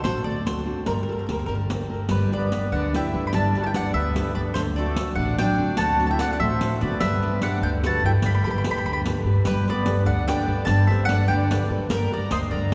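Mandolin, nylon-string guitar, upright bass and riq open together on a D7 chord, setting up a passionate, wistful Italian folk serenade in G major, swaying in 6/8 at 98 BPM in dotted quarters with a straight feel. The picked mandolin carries the melody up front, its doubled strings sounding round and warm, while the fingerpicked guitar accompanies with a full-bodied, deep classical tone from fresh strings, finger squeak audible. The pizzicato upright bass sits up front too, woody and thumpy on gut strings, and the riq adds dark jingles from hard hands, heard close and dry. At 2.1 seconds the accordion joins with a reedy, rich second line carrying a boxy small-room character, as the harmony moves through G, D7 and Gadd9 before turning to G minor at 11.9 seconds. The ensemble is bathed in a wet cathedral reverb, as if played in a church or concert hall, and the clip is cut from a longer piece.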